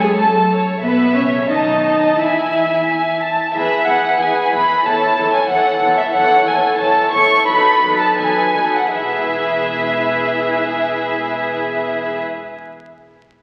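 Lively and spirited, this short cut from a longer classical-period movement for string orchestra moves in a straight 2/4 in E major at 77-94 BPM, easing into a slowdown between 5.5 and 8.9 seconds before settling on an E chord. Up-front violin sections carry the melody and a second line with soft-attack, sul tasto bowing and vibrato, while violas fill the accompaniment and a very quiet, dark cello section joins the double basses on the bass. The intimate, close string sound sits in a wet concert hall reverb, colored by the crackle of a very old 78 rpm record.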